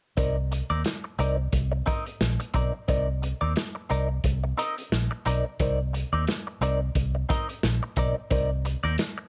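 Funk at 88 BPM in C minor with a lightly swung sixteenth-note feel, this hypnotic excerpt sits on a single Cm9 chord as a crunchy, saturated breakbeat kit of hi-hat, tight kick and medium-tuned snare, gritty with a rolled-off top, locks in with a round, punchy, foam-muted vintage fingered bass and a bright, twangy, direct-recorded clean guitar treated with wah and plate reverb, all three entering together at 0.2 seconds in a dry, up-front mix.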